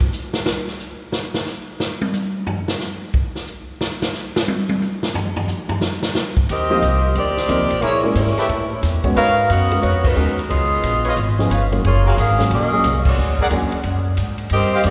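A swinging 4/4 pulse at 180 BPM drives this joyful, energetic big band jazz excerpt, cut from a longer piece and opening with a drum solo that runs alone until 6.5 seconds, the kit sounding natural and up front with a medium-tuned snare, punchy kick, hi-hat, ride, crash and toms. At 6.5 seconds the band arrives: a smooth saxophone section with light vibrato and a soft attack carries the melody, while a woody, growly upright bass played pizzicato thumps beneath it. Just after, a dark, mellow baby grand piano adds intimate accompaniment with audible action noise and short sustain, and a trumpet section sits in the background with jazz-style stabs. The harmony moves through rich extended chords, from Eb69 through Abm11 and Gbmaj9 to a closing Bb7alt, with full-band accents landing at 10.0 and 13.0 seconds. A long, wet church reverb surrounds the ensemble, giving it the spacious bloom of a concert hall.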